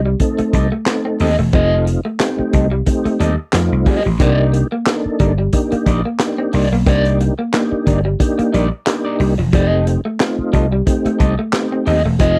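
A cool, driving funk groove opens with a picked, compressed electric guitar riff played through a small old amp, alongside a round, punchy vintage slap bass that sits up front. A second electric guitar, fingered and slightly broken-up, enters at 0.1 seconds with wah-coloured accompaniment pitched higher. At 0.2 seconds a tonewheel organ adds smooth, clean stabs shaded by chorus vibrato, key click and a slow rotary speaker. At the same moment a crunchy breakbeat kit arrives with a high-tuned snare, kick, hi-hat and handclaps, its small-room sound dark, gritty and saturated with a rolled-off top. The sixteenths carry a light swing, and the harmony moves from F9 to Cm9 and returns to F9 at 9.5 seconds, all in a dry, close 1970s-style studio sound cut from a longer piece.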